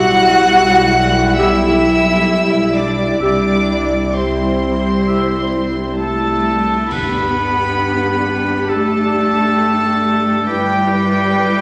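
Moving and uplifting, this cinematic orchestral film-score passage, cut from a longer piece, unfolds with a free, rubato feel. A high, rich violin section carries the melody with a soft, floating, sul tasto tone, while a second, closer violin section, an airy, mellow flute ensemble in the background, and a clear, smooth-topped solo oboe entering at 1.4 s weave supporting lines beneath it, joined briefly by a warm solo clarinet in the background. Dark, woody violas with lush vibrato fill out the middle, distant, roomy French horns hold sustained chords, and an intimate chamber cello section joins a pure, deep double bass section on the bass. Very quiet, dry timpani on calf heads mark the opening, and from 3.2 s bright cymbals, a cymbal swell and concert bass drum sound from the background before the full ensemble accents the arrival of a new section at 6.9 s. The harmony moves from a minor colour into a radiant major resolution, all set in a wet scoring-stage reverb with a vinyl crackle.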